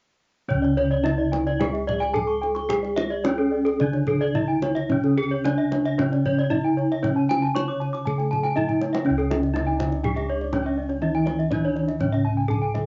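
A straight 4/4 pulse at 109-122 BPM drives this brilliant, ceremonial Balinese gamelan excerpt in C# pelog, where an up-front, boxy bronze metallophone struck with a horn mallet carries the melody over a soft, mellow metallophone accompaniment played with padded disc mallets, two ringing arpeggio metallophones (one dark and smooth, the other bright and airy) whose paired tuning adds shimmering beats, round bronze bossed gongs with padded beaters on the bass, and a tight, vintage kendang whose fill at 8.6 s leads into the second section, where a fingerpicked concert harp enters in the background at 9.6 s, all captured as a cassette home recording in a small, damp booth with a band-limited, lo-fi sheen.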